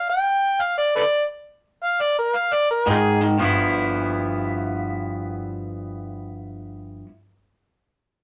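Laid-back and swaggering, this fragment of an electric blues shuffle in G mixolydian swings along at 114 BPM, opening with a stop-time break where an overdriven harmonica plays a gritty, jazz-style solo full of vibrato, tongue slaps and scooped notes until 3.2 seconds. At 2.9 seconds a twangy, slightly broken-up electric guitar through a small old amp takes up a lo-fi, compressed picked riff up front, alongside a woody pizzicato upright bass lower in the mix. A moderate studio reverb gives the performance a natural sense of room.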